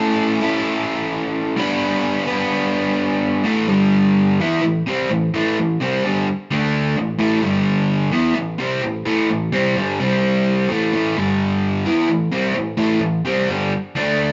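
Swaggering and driving, this rock passage at 128 BPM in straight 4/4 showcases a crunchy, bright overdriven electric guitar, picked and double-tracked up front, shifting from A to G before digging into A5, G5, D5 and C5 power chords, all set in a live-room sound with light reverb and a softened top end.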